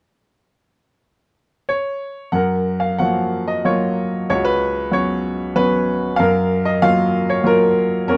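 Classical solo piano in a lyrical, hopeful mood, moving at 95 BPM in 3/4 with a rubato feel in F# major. The baby grand enters at 1.7 seconds and carries the piece alone across a register from C#2 to F#5, its tone brilliant, open and up front, moving through F#maj7, C#7sus4 and back to F#maj7. Light reverb and a dark, warm production frame the sunny playing in this brief cut from a longer work.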